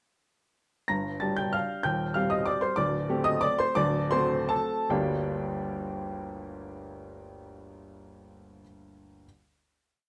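In a rubato 3/4 lilt ranging between 139 and 201 BPM, this short, bittersweet and nostalgic classical waltz in G minor, tuned a touch low to A4 = 438 Hz, gives a solo upright piano with a clear, woody, intimate voice and audible action noise, placed up front under close, detailed microphones and light reverb, carrying its tune in octaves over a waltz bass through Gm, Cm/Eb, D7sus4 and D7, slowing from 2.3 s before resting on a final G minor chord at 4.9 s.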